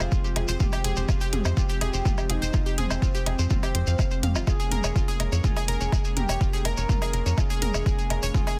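This dark, dramatic melodic techno excerpt in F minor opens at 124 BPM in a straight 4/4, with a smooth, expressive sawtooth lead singing a mellow, vibrato-tinged melody over a vintage, warbling pad that sits in the background on sustained chords. A round, detuned pluck spins bright, wave-folded arpeggios through chorus and digital delay, while a tight, driving sequencer bass with a fast filter pluck and tube saturation anchors the low end. A deep house kit of metallic hats, toms and woodblock plays from the very start, and a punchy, overdriven electronic kick enters at 0.1 seconds and stands up front, with a grainy, close acoustic shekere adding texture. Sidechain pumping breathes through the lead, pad, pluck, bass and kit, and the lead also carries tape echo. The harmony moves from Fmadd9 to Bbm7/F at 4.5 seconds, all within a dense, heavily limited modern master set in digital ambience.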